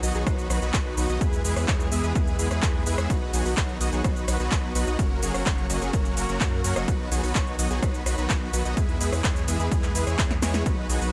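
Festival progressive house at 127 BPM in B major, anthemic and triumphant, built around a huge, euphoric supersaw riff with dub echo that pumps alongside a deep, saturated sub bass and veiled, muted chamber strings holding chords in the background, while a punchy, overdriven big-room kit of snare, crisp hats, claps, ride, rim click and shaker drives throughout, joined by an electronic kick from 0.3 seconds, with a drum fill at 10.3 seconds in a dry mix that cycles through B, E and F#.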